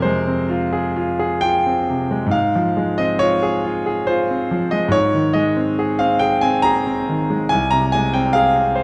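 Mournful and wistful, this fragment of a romantic classical nocturne in 3/4 unfolds with free rubato on a solo concert grand piano, its brilliant, vintage tone sitting up front with deep bass and spanning C2 to Bb5, as the harmony moves from Fm through Fm/Ab to Ab and Ab/C inside a reverberant recital hall.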